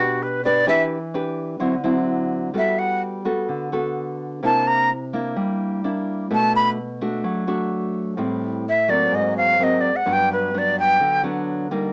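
Intimate and wistful, this bossa nova excerpt at 128 BPM in G major features a breathy, bright jazz flute soloing up front with crisp, chiffy attacks and vibrato until 11.2 s, over a full-bodied, fingerpicked classical nylon-string guitar with a cassette-tape tint moving through chords such as Em7, Gmaj9 and Ab9, set in a moderate studio ambience with the small-speaker sound of a home cassette recording.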